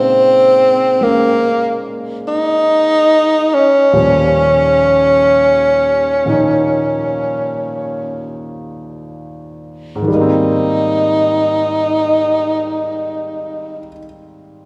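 Swung eighths in a slow 4/4, between 32 and 50 BPM, ease back further through the first 10.1 seconds of this tender, romantic jazz ballad in Ab major, cut from a longer piece. A breathy tenor saxophone sings the melody up front with subtone, vibrato and scooped notes, while a grand piano with an intimate, natural sound and audible action noise accompanies through chords moving from Bbm11 to Eb13 and settling on Abmaj9 at 10.1 seconds. The saxophone stops at 13.9 seconds and the piano rings on to 14.7, all bathed in the wet, lingering reverb of a church or concert hall.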